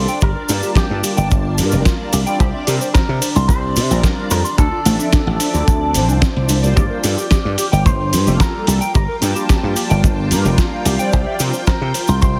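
The dry, thumbed slap bass sits punchy and up front with bright tube-saturated grit under this cosmic, groovy nu-disco cut from a longer piece, moving at 110 BPM in a straight 4/4 in G dorian. A tight, dry kick anchors the groove alongside a dusty sampler-style kit of gritty hi-hat and medium-tuned snare, while a cabasa with a maracas and handclap character sits close yet in the background. The melody comes from a twangy, picked electric guitar run through an envelope filter and dub echo, while a second, darker guitar plays a clean, fingered riff with subtle chorus. Round, detuned synth brass with filter sweeps, vibrato and phaser fills the accompaniment until 11.5 s, pumping alongside a lush string machine that holds slow-attack sustained chords through ensemble chorus behind the band. The chords cycle through Gm7, C7sus4 and Dm7, and the whole mix carries light studio reverb and a heavily compressed, radio-style sheen.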